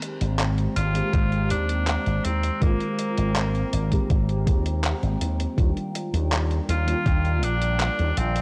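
Dreamy and woozy, this short vaporwave fragment drifts at 81 BPM in a straight 4/4, moving from Abmaj9 to Ebmaj7 at 5.6 seconds over a warbling, detuned tape-like pad that sits nostalgically in the background with chorus and its own reverb. A round, dark FM electric piano with ensemble chorus and analog delay plays alongside a tape-warm, detuned 8-bit drum machine of handclaps and hi-hat from the start, while a bright, amped slap bass pushed up front through an envelope filter and tube saturation enters at 0.2 seconds and a thumpy electronic kick comes in at 1.1 seconds. From 0.8 seconds a punchy, vintage-toned tenor saxophone takes the jazz-style solo melody with vibrato and analog delay, all captured in a dry, gritty cassette sound with digital ambience.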